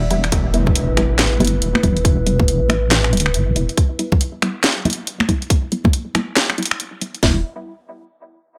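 Deep dubstep at 139 BPM in E minor, this short excerpt from a longer piece moves with a dark, meditative half-time feel and a 61% swing on the sixteenths. A brief break fills the first 0.3 seconds while a moody, wave-folded analog pad lays down sustained chords through lush chorus, alongside a deep, saturated wobble bass that sits up front until 3.7 seconds and returns briefly at the close. A muted, full-bodied chord stab plucks through phaser and dub echo, with a filter sweep running across it from 0.3 to 7.2 seconds over an E minor chord. Two layered electronic garage kits drive the groove with a tight kick, cracking snare and bright hats, one adding finger snaps and handclaps, all set in a small room ambience. Damped, high-tuned congas played with soft hands drift through dub echo, while an electronic impact hits in the background at 0.3 seconds, and a light reverb ties the mix together.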